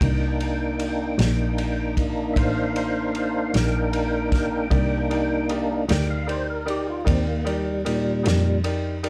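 Slow blues in a soulful, brooding 12/8, cut from a longer piece, where a fat, lightly overdriven tonewheel organ with key click, chorus vibrato and a slow rotary speaker sits up front holding sustained chords over Cm7 as the solo voice; a rich, close bowed double bass with vibrato and portamento and a small-room vintage drum kit with a punchy kick, dark cymbals and a rolled-off top support it, and a brilliant, intimate baby grand piano with audible action noise joins at 4.7 seconds, all under light reverb in a dark production.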